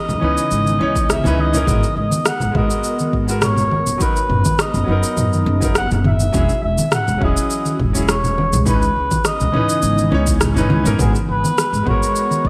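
Wistful and smooth, this sunset chillout excerpt moves at 103 BPM in G# minor with a gentle 16th-note swing, drifting through C#m9, G#m9, Bmaj7/F# and E69 chords. A mellow, veiled cup-muted trumpet carries the melody up front through a digital delay, over an ethereal, detuned pad with ensemble chorus, a woody pizzicato upright bass, and a clear concert grand piano whose short-sustain accompaniment also passes through delay. Deep house drums with rim click, shaker and toms under gated reverb, soft-handed congas in the background, and a punchy layered electronic kick entering at 1.0 s sit within a lush hall reverb and bright 1980s-style digital production.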